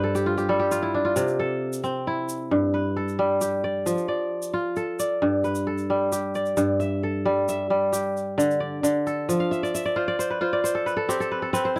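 Warm and flowing, this excerpt of West African traditional string and xylophone music moves at 89 BPM in a straight 12/8 in G mixolydian, with a crisp, ringing fingerpicked kora playing up-front arpeggios over C, G and F chords and adding fills at the opening and from 9.4 seconds, while a grainy, bright tube shaker enters at 0.2 seconds, all captured in a dry, close 1970s-style studio sound with moderate booth ambience.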